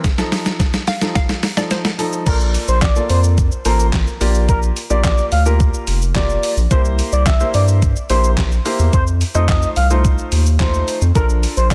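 Dance-pop, upbeat and euphoric, cut from a longer piece: a thumpy, tape-tinged 8-bit drum machine with handclaps and crash drives a drum-fill build-up under clear, intimate grand piano chords with audible action noise, while a hollow, bouncy square pluck with chorus and tape echo sits in the background from 0.9 to 2.1 seconds, before the drop at 2.3 seconds brings in a round, deep analog bass up front and a smooth, expressive sawtooth lead with vibrato, all three pumping to the sidechain in a dense, heavily limited, dry mix.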